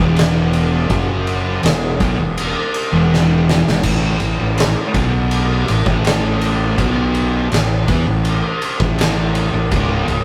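Heavy and ominous, this short cut from a longer stoner and doom metal piece sets a double-tracked, distorted fuzz guitar riff moving from E5 to A5 over a growly, overdriven fingered bass, while an oversized low-tuned drum kit with a fat snare, punchy kick and dark crash and ride cymbals enters at 0.2 seconds and drops a fill at 3.1 seconds, all caught in a rough rehearsal-room recording with a moderate stone room reverb.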